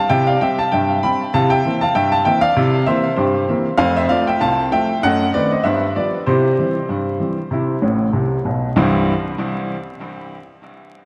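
A swung 2/4 ragtime lilt drives this lively, jaunty solo for woody, up-front upright piano, touched with digital delay and set in a lush hall reverb with vinyl crackle for a dreamy feel, moving from C through F and a diminished passing chord to G7 before a fill at 7.8 seconds leads into a new section as the clip, taken from a longer piece, breaks off.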